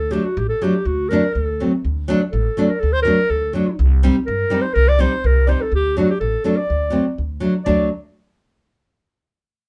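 Recorded with the band playing live in one room, this brief cut from a longer klezmer piece carries a moderate studio reverb that gives its close, up-front instruments a touch of air. The mood is bittersweet and soulful, set in a straight four-four feel. A dark clarinet with a smooth top carries the solo melody in a classical style. Beneath it, from 0.1 s, an acoustic nylon-string guitar fingerpicks the accompaniment with a deep classical tone, and a finger squeak can be heard. The plucked upright bass adds a woody, steel-string weight to the low end. The harmony rests on D, moves to C minor at 3.8 s, and returns to D at 5.7 s.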